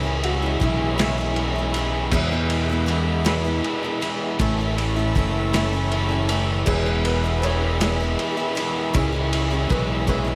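Lightly reverberant and nostalgic, this jangly folk rock and heartland rock excerpt in 6/8 layers a crunchy, double-tracked overdriven guitar riff and a boxy, picked parlour acoustic guitar over an up-front fingered electric bass and a muffled, lo-fi vintage drum kit that enters at 0.2 seconds. A reedy, shimmering musette accordion holds chords in the background, a very quiet, brilliant baby grand piano adds a fill from 5.5 seconds, and a dark, woody upright piano line returns at 6.7 seconds before a drum fill at 10.1 seconds, all over chords moving from C#m through E and A.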